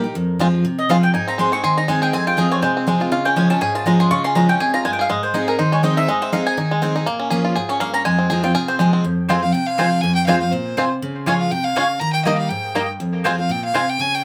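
The mandolin stands out first, taking a solo through the opening 9.0 seconds with woody, double-strung stabs trailed by tape echo. This rustic, driving bluegrass excerpt in a swung 4/4 is carried by a bright, full-bodied dreadnought acoustic guitar picking out the accompaniment up front, while a twangy, percussive banjo played with fingerpicks carries the melody from 0.4 seconds. The harmony moves among minor and major chords, settling back on F minor near the close. At 9.4 seconds, just after the second section begins, a single clear fiddle enters with a smooth, even bowed line and light vibrato, joining the banjo on melody. A moderate studio reverb gives the group a modest sense of room before the piece is cut off at 14.2 seconds.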